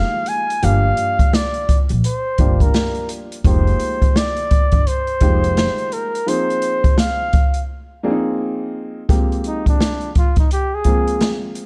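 A dark, dry production with little reverb frames this cool, nocturnal jazz-hop passage cut from a longer piece, its swung hip hop groove carried by an airy, up-front acoustic jazz kit with a boomy kick, a medium-tuned snare and the grit of a vintage 12-bit sampler. A mellow, smooth-topped flugelhorn with vibrato leads over a boxy, shadowy upright piano, while a woody pizzicato upright bass joins at 0.6 s and stops at 5.7 s ahead of a break. From 9.1 s the flugelhorn takes a solo to the end.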